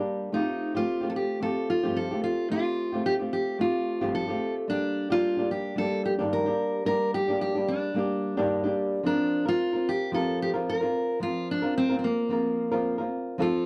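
A dark, thumb-plucked flamenco guitar opens this wistful, reflective acoustic pop passage at 110 BPM with a light sixteenth-note swing, joined at 0.3 seconds by a full-bodied fingerpicked steel-string dreadnought carrying the melody, both up front in a dry, close 1970s-style studio sound with light reverb as the harmony moves from F to Ebmaj7/G at 4.7 seconds and Fsus4 at 9.0 seconds before the cut from the longer piece.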